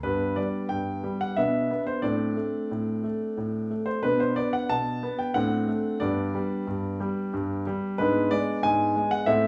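A solo concert grand piano opens at once on a G major chord, setting a playful, cheerful mood in a classical-period sonatina style. The piece moves in 3/4 at 91 BPM with a rubato feel, so the pulse bends gently rather than holding strictly steady. Ranging from G2 to A5, the piano sounds clear, natural and up front, with deep bass, an intimate presence and audible action noise from the instrument's mechanism. The harmony passes through Bmadd11, D5/A, Bm7 and D7/A before returning to G at 6.0 seconds and reaching G#m7b5 at 8.0 seconds. A moderate studio reverb frames the instrument, and this brief passage, cut from a longer piece, ends at 9.5 seconds.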